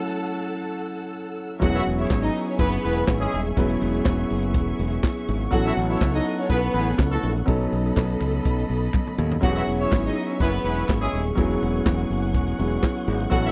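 Danceable and celebratory, this disco cut in E major moves at 123 BPM in a straight 4/4 feel and is taken from a longer piece. It opens on a short break where a clear concert grand piano, a lush, bowed violin section set at a distance, and a smooth-topped string section holding sustained chords sound together over an F#m7 chord. At 1.6 seconds the groove arrives: a vintage acoustic drum kit with a punchy kick, medium-tuned snare, toms, hi-hat and handclaps sits up front beside a bright, direct fingered electric bass, and at 1.7 seconds a roomy horn section adds vibrato-laden stabs with octave doubling. Very quiet, crisp group handclaps join at 2.1 seconds, while the chords move through E6, A6 and B7 before a drum fill leads back to E6. The piano's deep bass and long sustain ring through the accompaniment, and the whole recording has the dry, close character of a 1970s studio with little reverb.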